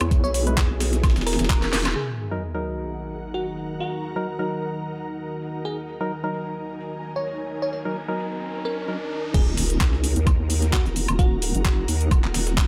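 A bouncy, aggressive bass house groove at 130 BPM in Eb phrygian opens with a knocking, tape-warm electronic kick up front, a nasal, saturated vowel-sweep wobble bass, and a garage drum kit with cracking snare, metallic hats, cabasa, handclaps, woodblock and crash, all set over a moody, detuned analog pad, an ethereal airy pad and hollow organ stabs. A sparkling, bell-like FM electric piano carries the melody through chorus, phaser and dub echo, while a gritty sampler-style breakbeat kit sits in the background, and a drum fill with a band accent at 1.8 seconds closes the opening bars. By 2.0 seconds the kick, wobble bass and breakbeat have dropped away, leaving the pads, stabs, electric piano and garage kit to ride a sidechain-pumped middle passage marked by an impact and, from 7.1 seconds, a rising build. At 9.3 seconds the drop lands with an impact as the kick, wobble bass and breakbeat return, the organ stabs and analog pad having just fallen silent, and the electric piano drops out of the mix shortly after. 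The mix is bathed in light digital ambience, with the airy pad's tremolo and ensemble chorus shimmering through in this short cut from a longer track.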